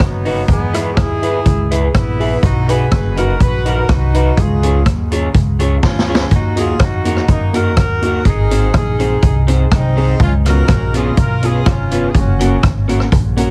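A warm, present horn section in a jazz ensemble style carries the melody of this cheerful, bouncy ska piece at 124 BPM in straight 4/4, its lines touched with dub echo before it drops out at 12.6 seconds. Behind it, a street-band drum kit sits up front with a high-tuned snare, boomy kick, hi-hat and rim click, rolled off at the top and played in a small room, with a short fill at 5.8 seconds. A pizzicato upright bass on gut strings gives a woody, thumpy low end. An electric guitar through a small old amp adds bright, twangy, slightly broken-up picked accompaniment with a lo-fi edge, while a dark, boxy upright piano places mellow stabs in the background from 0.2 seconds, also carrying dub echo. The chords move from E through B, C#, D#m, G# and C#7 to F#, and the whole clip, cut from a longer piece, has light reverb and a heavily compressed radio sound.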